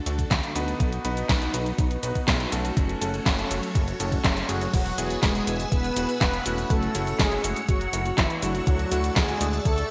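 A swirling, phased string machine opens this danceable, melodramatic italo disco excerpt with a filter sweep in the background, soon joined by clangy stabs of bright electric grand piano, a glossy, tube-saturated synth bass, an overdriven, thumpy electronic kick and an up-front house kit of punchy snare, bright hats, handclaps, cabasa and crash treated with gated reverb. At 4.7 seconds the harmony moves into a new section, and from 4.5 seconds a round, dark synth brass carries the melody with vibrato, chorus, cassette-tape coloring and digital delay. The 1980s-style digital production sits in a lush hall.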